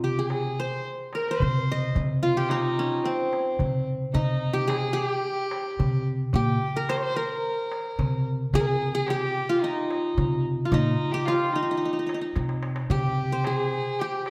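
A straight 4/4 pulse at 110 BPM drives this longing, soulful Turkish makam ensemble piece in C minor, tuned to A4 = 438 Hz and cut from a longer work. The plectrum-plucked qanun carries the melody up front, its triple strings giving a bright-edged, warm ring. Beneath it, a single bowed violin traces a second line with a dark, earthy tone, light vibrato and a smooth top. A pizzicato upright bass on gut strings supplies a woody, thumpy low end before dropping out at 13.8 seconds. A metal-shell darbuka, played with soft hands, sits crisp in the background and adds a short fill from 12.4 seconds. The whole ensemble sits in a wet recital hall reverb, and the music moves from its opening passage into a second section at 4.2 seconds.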